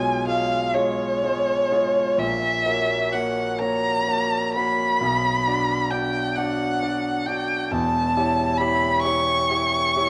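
In a rubato 6/8 lilt of about 41-46 dotted-quarter beats per minute, this melancholic, yearning romantic classical piece, cut from a longer work, sets a single warm, expressive violin singing the melody up front with vibrato and portamento over a bright, brilliant concert grand piano whose open, deep-bass accompaniment rings with long sustain, moving through chords from C#7/B to C#dim/E across 10.1 seconds, all bathed in a wet recital-hall reverb and colored by the worn, warbling pitch drift of old cassette tape.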